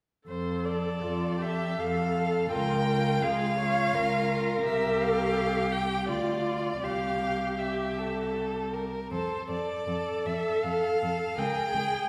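A focused violin with vibrato sings the melody up front in this serene, lyrical slow romantic movement for string quartet in F major, cut from a longer piece and played in 3/4 at 77-86 BPM with rubato, while a second violin with a smooth top traces a softer line from 0.7 s, a close viola with soft attack and expressive portamento fills the accompaniment, and a rich, even cello holds the bass until 11.8 s, the harmony moving through F, Db and Dm within a wet scoring-stage reverb heard from further back in the room.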